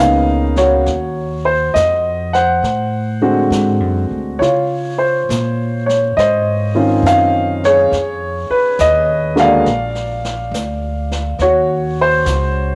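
Smoky and intimate, this jazz ballad unfolds in a relaxed swing, cut from a longer piece. A warm, up-front grand piano carries the accompaniment throughout, moving through lush extended chords from Bmaj9 to D7#11, Dbmaj9 and Ebm11 before settling on Ebm7. Beneath it, a woody, growly pizzicato upright bass with steel strings holds down the low end from the opening moment. A jazz brush drum kit enters at 0.6 seconds, its brushed snare and hi-hat sitting far back in the mix with a faint cassette-tape colour. Light reverb and small room ambience give the whole a homespun, late-night feel, like a home recording on cassette.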